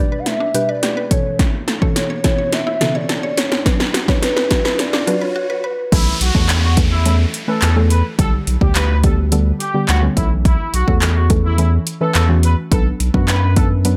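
Dance-pop in a confident, bittersweet mood, this excerpt opens with a build-up where a hollow, woody clarinet-like synth lead carries the melody with vibrato and dub echo, over a gentle, dark pluck and a bright, percussive mallet-like synth arpeggio set in the background, while a riser and downlifter sweep behind and an overdriven deep house kit plays a fill. After a short break at 5.4 seconds, the drop lands at 5.9 seconds, where a distant, roomy horn section takes over the melody and a thick, saturated sub bass enters with sidechain pumping. Up front, the punchy snare, metallic hats, handclaps and crash drive the groove, all set in light reverb and digital ambience.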